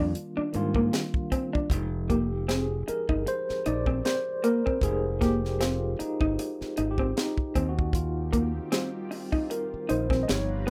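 An electric guitar through a small old amp, a tine electric piano and a fingered electric bass open this introspective, soulful R&B and neo-soul excerpt, with a tight funk drum kit joining almost at once. The tempo sits at 77 BPM in 4/4 with a swung sixteenth-note feel in F dorian, and the harmony moves from Ebmaj9 to Fm9 and later to Eb69. From 1.7 seconds the electric piano takes a solo up front, its worn, slightly out-of-tune tone lightly overdriven and pulsing with medium tremolo through a combo amp and plate reverb. Beneath it the guitar plays a second line in a picked, slightly broken-up, compressed lo-fi voice bathed in plate reverb, while the bass sounds bright, direct and punchy and the dry acoustic kit offers a high-tuned snare, tight kick and hi-hat. At 7.9 seconds a lush unison pad arrives low in the mix with detuned sawtooth and square-wave thickness, a slow attack, long release and chorus. 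The whole has the rough feel of a home demo in a small room with moderate reverb.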